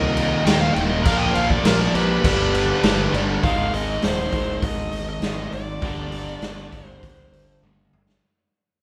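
Up front, a raw garage drum kit drives this hard rock excerpt at 100 BPM in a straight 4/4, its punchy kick, medium-tuned snare, hi-hat, toms and crash sounding saturated and gritty with a rolled-off top in a bright stone room. A bluesy, dark distorted lead guitar carries the melody from the start, joined until 3.1 seconds by a second, smoother overdriven lead line in the background. Beneath them, a stack of picked rhythm guitars plays the riff: a bright, crunchy overdriven part in the background, a double-tracked high-gain distorted guitar that stops at 3.4 seconds, and a very quiet hollow-bodied semi-hollow guitar. A growly fuzz fingered bass, direct and amped with an overdriven punch, anchors the low end. The mood is driving and aggressive, with the band captured playing live in one room with light reverb, and the music fades out from 3.4 seconds as a drum fill closes it at 7.6 seconds.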